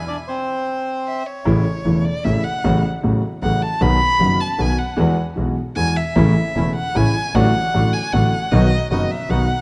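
A bowed violin with vibrato, a soft attack and portamento takes an expressive solo from 1.5 s in this dramatic, sultry tango excerpt in a rubato 3/4, carried by an up-front concert grand piano with deep bass and a smooth, vintage tone, an earthy bowed double bass set distant, dark reedy bandoneon stabs that return at 6.2 s, and an airy bandoneon melody in the background that lasts only until 1.2 s, all captured with close, detailed microphones and light reverb.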